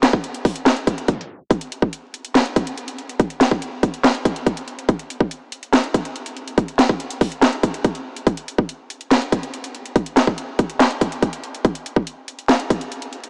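Heard through vinyl crackle, a small-speaker tone and a huge ambient reverb, this brooding, dark hip hop excerpt at 142 BPM in a half-time 4/4 feel centers on an up-front electronic trap drum kit of hard-clipped kick, sharp snare, metallic hi-hats and handclaps, with a tape stop at 1.1 seconds giving way at 1.5 seconds to the main stretch that runs to the cut at 13.3 seconds.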